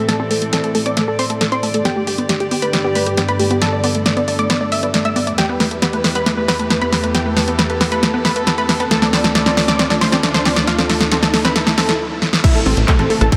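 Uplifting trance at 136 BPM in A minor, this bittersweet, emotional excerpt from a longer piece builds tension over a chord cycle of Am, G, Em and Dm before landing back on Am at 12.4 seconds. A lush, detuned unison pluck carries the melody through cassette-tape color, digital delay and sidechain pumping. Beneath it, a soft-attack studio string section sustains floating, bowed chords roughened by vintage 12-bit sampler grit. A round analog pluck with chorus spins arpeggios in the background under a filter sweep, while a very quiet riser and downlifter enter at 4.7 seconds. The up-front house kit of punchy snare, bright hats, handclaps, rim click and crash drives a drum fill through the build-up, then drops out for a brief stop. A punchy electronic kick and a funky, wave-folded analog bass arrive just before the end, all bathed in a huge ambient reverb.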